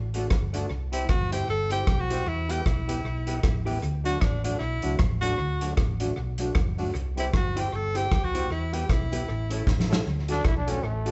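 Upbeat and cheerful, this ska excerpt in D major swings along at 154 BPM, with an up-front vintage drum kit, its punchy kick and medium-tuned snare wrapped in tape echo and a pumping small-room sound, over a dark, round hollow-body bass and a quiet, jingly tambourine. A clean hollow-body jazz guitar and a smooth tonewheel organ with chorus vibrato sit in the background while a breathy, clear tenor saxophone carries the melody from 0.9 seconds. After a drum fill, a raspy, growling trombone takes a brilliant solo from 10.3 seconds, all in a live band sound with a moderate large-studio reverb and a rolled-off top.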